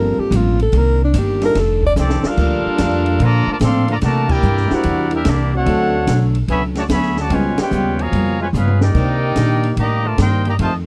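Energetic and brassy, this big band swing excerpt moves at 146 BPM with a firm swing feel. A breathy, whispered alto saxophone with scooped notes opens up front before handing off at 2.0 seconds to a clear, tight trumpet section carrying the melody over a warm trombone section's second line, with band accents at 4.2 and 7.5 seconds. Underneath, a woody, thumpy upright bass holds down the low end, joined by an open drum kit with dark cymbals and a boomy kick, plus a picked steel-string acoustic guitar and a concert grand piano with audible action noise sitting in the background of a dry, close 1970s-style studio sound.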